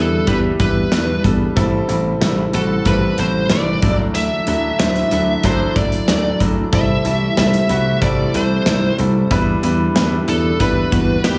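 A dark, compressed fuzz lead guitar carries the melody over a clear, polished baby grand piano and a bright, punchy slap bass in this moody, nostalgic slice of 1980s-style pop, cut from a longer piece. A very quiet string machine sustains soft-attack cello chords with a vintage ensemble chorus, while an acoustic studio drum kit with a punchy kick and medium-tuned snare enters at 0.3 seconds in a pumping room sound. The harmony moves through Em7, Am7, Dadd9 and Am7/C before settling back on Em7, all set in a light, small-room reverb.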